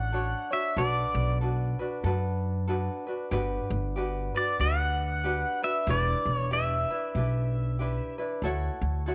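Hawaiian music in a dreamy, languid mood, with a gentle swing on the eighth notes, taken from a longer piece. An electric pedal steel guitar carries the melody up front, its clean, twangy, compressed tone shaped by fingerpicks, slide and volume swells, before it falls silent at 8.1 seconds. A tenor ukulele fingerpicks a light acoustic accompaniment, while a pizzicato upright bass with gut strings gives a woody, thumpy low end, both playing through to the close at 9.1 seconds. The harmony drifts through lush seventh chords, moving from Dmaj7 through Bm7, Gmaj7 and Em7 before settling on Dmaj9. Light reverb and a touch of studio ambience lend the sound a soft, warm glow.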